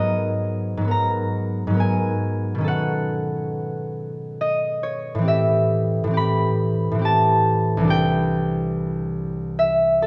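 Wistful and mysterious, this classical excerpt for solo concert harp moves in a rubato triple metre, its ringing, up-front, fingerpicked strings spanning C2 to B5 through lush ninth chords from Abm9 to Cadd9, bathed in the wet reverb of a recital hall with a softly rolled-off top end.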